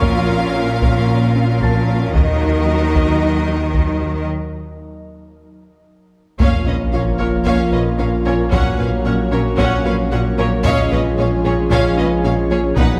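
A tense, vast hybrid orchestral and electronic film cue at 113 BPM opens with a taiko ensemble on hard sticks beneath bowed strings: a bright violin section on a second line, clear violas, a lush cello section and a focused double bass section. An airy, chorused pad, a soft, round synth pluck playing arpeggios and a dark, boxy grand piano with digital delay sit in the background. After a break and a drum fill, an impact at 6.4 s lands in Bb minor with a huge sub drop and a saturated sub bass, as a distant, intense violin section takes the melody over sustained chords from mellow French horns and a trombone section, all heard from further back in a wet recital hall.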